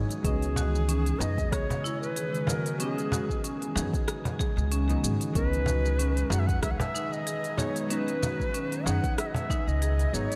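Organic downtempo with a mystical, hypnotic pull, this short cut from a longer piece sets an airy cedar flute melody with delay over a woody, pizzicato upright bass, bright hard-mallet marimba arpeggios, an ethereal detuned pad and a soft, mellow chord stab pumping behind, with faint glassy overtones drifting in the background, while an overdriven, up-front electronic kick, crisp-hatted electronic kit and band-limited vintage cajon carry a lightly swung groove through C#m7 and G#m, all soaked in cathedral reverb.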